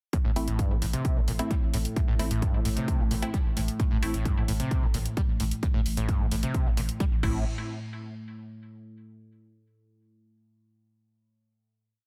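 A heavy, up-front four-on-the-floor kick, tape-warm hats and crash, and a squelchy, gritty acid bass riff with slides and accents drive this dark, industrial peak-time techno piece in A minor at 131 BPM from 0.1 s. They are joined by a deep saturated sub bass rumbling between the kicks, crisp detuned wavetable chord stabs echoing sparsely from 0.4 s, and an evolving, mellow analog drone from 0.9 s. Everything but the kick pumps under a dense, heavily limited master with light reverb until a final hit at 7.5 s.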